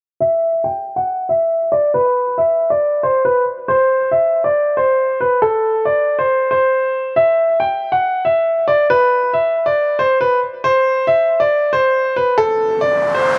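A brilliant, intimate grand piano sits up front and carries the melody throughout this menacing, dark hip hop passage in a half-time feel, its long sustain and audible action noise shaped by a low-pass filter that sweeps across the whole section. An electronic riser enters at 12.6 s and runs to the end at 13.4 s. A moderate spring reverb and small room ambience frame the sound of this fragment cut from a longer piece.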